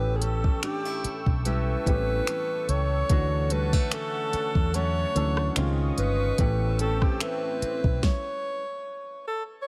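Heard in a small room, this dreamy, romantic contemporary R&B fragment at 73 BPM sets a clear, jazz-style alto saxophone melody with digital delay up front over natural baby grand piano, a detuned, warbling sawtooth analog pad with chorus, fingerpicked steel-string acoustic guitar arpeggios with digital delay, a dark, foam-muted fingered electric bass and a produced electronic drum kit with a soft kick, fat snare, finger snaps and rim clicks, while a very quiet electronic swell sounds near the close; piano, pad and bass stop at 8.0 s, the drums and guitar shortly after, and the saxophone plays alone until 9.7 s.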